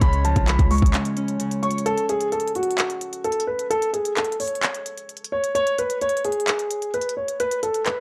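Dark, lightly reverberant production frames this eerie, hard-hitting trap excerpt at 130 BPM in a half-time feel, where a mellow baby grand piano carries the melody through tape echo, a fingerpicked Celtic harp rings beneath it until 4.1 seconds, a hollow, flute-like pad with chorus hovers in the background until 1.8 seconds, a deep, boomy 808-style bass drops out at 0.9 seconds, and an up-front electronic kit of hard-clipped kick, crisp hi-hats and handclaps drives on throughout.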